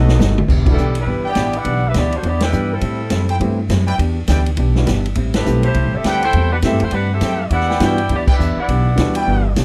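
Big band swing in E minor at 205 BPM, this brassy, swinging snippet opens with a drum fill, a very quiet, mellow saxophone section chord, a woody, thumpy upright bass up front and a dark, clean hollow-body electric guitar, before bright trumpet stabs, a warm grand piano that touches in briefly and returns at 3.4 seconds, and a clear, vintage saxophone melody with light vibrato drive through band accents over Em7 and Am7, all in a dark production with light reverb.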